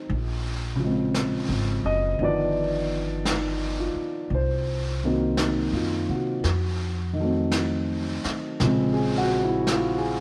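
A dark, mellow upright piano sits up front with a long sustain, carrying this wistful, intimate jazz ballad fragment through a minor progression that opens on Bbm7 and returns to it at 8.6 seconds. Underneath, a woody pizzicato upright bass with thumpy gut strings and a distant brushed kit with a rolled-off top play in a slow swing. Light, small-room reverb gives the 10.2-second passage a close, roomy feel.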